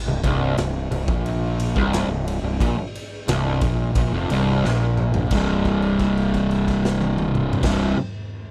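A straight 4/4 pulse at 88 BPM drives this sludgy, ominous stoner and doom metal excerpt, tuned slightly sharp to A4 = 443 Hz. A raw garage drum kit sits up front, its punchy kick, medium-tuned snare, toms, crash and ride heard through a gritty, saturated sound with a rolled-off top and a pumping, bright stone room. A double-tracked, compressed fuzz guitar carries the low riff between C2 and C3, distorted and prominent in the mix. Beneath it, a fingered electric bass adds a dark, round, overdriven fuzz tone in the deepest register. A drum fill at 4.7 seconds leads into a new section at 5.3 seconds, where the band lands on a C5 chord and holds a note until about 7.6 seconds, all set in light reverb.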